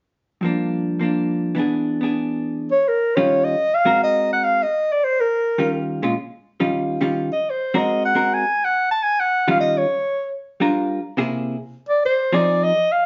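A playful, swinging jazz fragment in Eb major moves at a brisk 209 BPM in 4/4, cut from a longer piece. A vintage hollow-body electric jazz guitar opens alone at 0.4 seconds, its dark, clean, picked tone compressed and up front as it comps through chords like Gm7 and E7. At 2.7 seconds a clarinet enters with the melody, taking the solo spot with a close-miked, jazzy voice full of vibrato, breathy subtone and scooped notes. The harmony leans on rich ninth chords, moving between Eb9 and Ab9, with a brief turn to Ebm11 before closing on Gm7, Caug7 and Fm7. The whole is heard from further back in a studio room, with moderate reverb and a softened top end that gives it a mellow, vintage cast.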